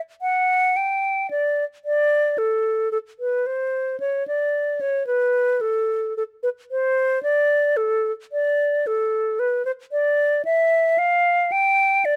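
Radiant and flowing, this excerpt from a baroque-style classical fantasia for unaccompanied flute moves in a rubato 3/4 at about 56 BPM, tuned to A4 = 439 Hz, as a solo concert flute plays from 0.2 to 12.2 seconds between A4 and G5 with a pure, hollow tone, vibrato and tongued notes, captured close-miked, detailed and up front in a dry room.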